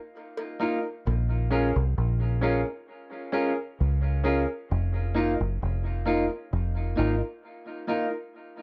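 Spacious and hypnotic, this dub reggae excerpt sits in a steady, straight 4/4 with the light reverb and soft grain of a home cassette recording. A close, acoustic cowbell ticks briefly in the background at 0.4 seconds, sent into dub echo. At 0.6 seconds a bright, twangy clean electric guitar, picked and up front, enters alongside a warm, woody upright piano with long, natural sustain, the guitar adding accompaniment and the piano adding stabs, both spilling into dub echo. From 1.1 seconds a deep fingered electric bass takes the low end, dark, round and punchy, with a foam-muted, amped directness that puts it squarely up front. The harmony moves from F7sus4 to Bbm7 and back to F7sus4, and a break arrives near the close of the passage.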